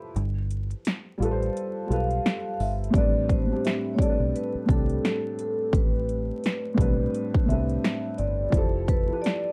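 Nostalgic and reflective, this lo-fi hip hop piece in A minor moves at 86 BPM in 4/4 with a swung sixteenth-note feel, cut from a longer work. A felt-muted upright piano sounds from the start, soft, boxy and intimate under a low-pass filter, while a deep dub fingered electric bass enters at 0.2 seconds with a round, foam-muted tone sitting low and up front. A big-room dance drum kit arrives at the same moment, its punchy kick and snare layered with metallic hats and roughened by vintage 12-bit sampler grit. The opening break moves from G9sus4 into Am11 at 2.9 seconds and later settles on Fmaj9, and a vibraphone played with soft mallets carries the melody from 1.9 seconds, its ringing, airy tone shimmering with slow motor vibrato behind its own low-pass filter. Light reverb, a dark overall production and a bed of vinyl crackle wrap the whole in a hazy, late-night glow.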